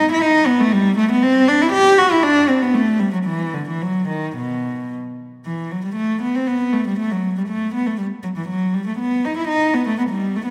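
In a flexible triple metre, the line stretches and relaxes with an unhurried rubato that gives this brief extract from a longer classical piece an introspective gravity. A single bowed cello carries the whole baroque-style suite movement alone, from 0.0 to 10.5 s, moving between B2 and G4. Its tone is warm, airy and intimate, played sul tasto with a soft attack and a light vibrato that keep the sound gentle and unforced. The opening phrase is heard, then the same material returns at 5.5 s, deepening the grave, inward mood. The cello sits close and up front, while a lush hall reverb with a long 2.2-second decay surrounds it with the resonant air of a church or concert space.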